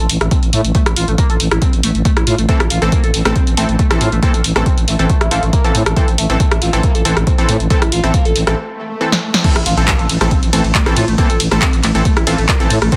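An overdriven synth lead and a growling FM bass open this short cut of driving peak-time techno at 138 BPM in A phrygian, the lead screaming out a gritty, guitar-like riff through distortion, phaser, lush chorus, 12-bit sampler grit and tape echo while the thick bass sits beneath on a sustained A minor. A punchy analog drum machine arrives almost at once with hi-hat, snare, handclaps, rim click, ride and crash, up front and re-recorded in a small room, and an electronic kick joins at 0.3 seconds, the loudest part in the mix. From 2.5 seconds a detuned supersaw stab adds punchy, unison sawtooth hits with a filter sweep and tape echo, and sidechain pumping runs through the lead, bass, stab and the drum machine's hats and cymbals. A brief break at 8.6 seconds brings a very quiet swell, a drum fill and a band accent before the drop lands at 9.4 seconds with a soft electronic impact. The mood is intense and dark, set in light reverb with a heavily compressed, radio-like finish.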